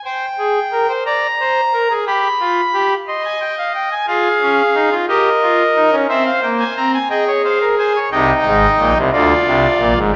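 Worn, warbling cassette tape and a wet scoring-stage reverb surround this driving, solemn baroque-style four-part fugue in 6/8, cut from a longer piece, where a solo pipe organ on a brassy, bright trumpet stop sits up front in romantic voicing, ranging from Ab1 to C6 from 0.0 to 10.2 seconds.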